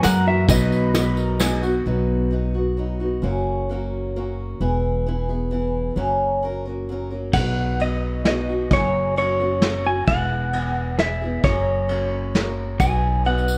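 In a straight 3/4 at 132 BPM, this nostalgic, hopeful acoustic folk piece in B major is carried by an up-front picked archtop guitar with audible finger squeak and a woody, thumpy pizzicato upright bass, while a reedy accordion line, jingly tambourine, muffled lo-fi brush kit and a dark, slightly broken-up electric guitar melody bathed in tremolo and plate reverb all sound briefly at the opening before they fall away by 1.8 s, leaving guitar and bass alone until the electric guitar and brushes return at 7.3 s within a moderate studio room.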